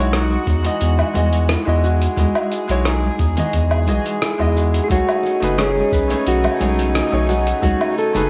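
This sunset chillout excerpt opens on a clear, polished concert grand piano with tape echo, a distant, reedy chamber string section holding sustained chords, thumb-plucked concert harp arpeggios carrying sampler grit, and a round, up-front analog bass, with the harmony moving from Emaj9 to B13 at 4.9 seconds. A gritty, compressed sampler-style drum kit of hi-hat, rim click, shaker and woodblock comes in almost at once, joined by bright congas and a deep electronic kick sitting in the background, setting a smooth, blissful mood. At 4.8 seconds a dark, clean electric guitar takes the fingered melody with tape echo, and this home cassette recording rests in a moderate spring reverb.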